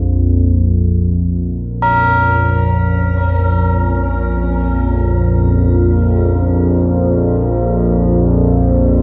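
A detuned, warbling analog drone sits up front in this dark ambient fragment, its low sawtooth and pulse-wave tones thickened with chorus and slowly evolving for a desolate, cavernous mood. Behind it, a sweeping resonant pad holds sustained chords on B-flat minor, its wave-folded, filter-swelling tone colored by chorus, phaser and shimmer reverb. At 1.8 seconds, mellow tubular bells enter with soft, metallic arpeggios struck by a padded hammer, ringing solemnly through a diffuse ambient delay and shimmer reverb. The analog synth pad fades in across the full 9 seconds. Everything sits in a wet cathedral reverb that gives the short fragment a vast, hollow depth.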